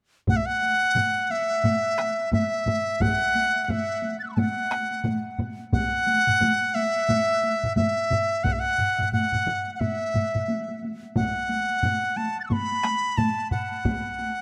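Powerful and driving, this Japanese traditional taiko ensemble passage in 4/4, cut from a longer piece, carries a lightly swung sixteenth-note feel as a bright, reedy dizi plays the melody up front, its close-miked bamboo tone pure and crisp, with a buzzing membrane, running from E5 to A6. Beneath it, four taiko ensemble parts play throughout: two struck with heavy sticks and heard in a live room, plus two close and dry layers in the background, one with hard sticks and one with heavy sticks. A light reverb gives the whole passage a little air.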